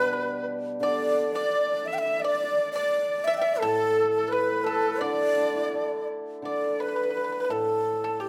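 Heard through close, detailed microphones in a recital hall with a moderate 1.5-second reverb, this short cut from a longer piece of Chinese traditional chamber music moves at 86 BPM in a straight 2/4, festive and graceful in the D zhi mode. A low end-blown xiao carries the melody up front, its bamboo tone breathy and bright, tongued and touched with vibrato and lifted highs. Alongside it a single horsehead fiddle adds a dark, husky, woody second line, bowed on horsehair strings with a soft attack, portamento and vibrato. A large dizi brings an airy, buzzing voice with crisp attacks and expressive vibrato until about 6.1 seconds. The pipa, played with fingerpicks, sounds dry and percussive, while a hammered dulcimer sits up front in the accompaniment with a shimmering, ringing tone. Around 6.4 seconds the music moves into a new section that runs to the close at 8.3 seconds.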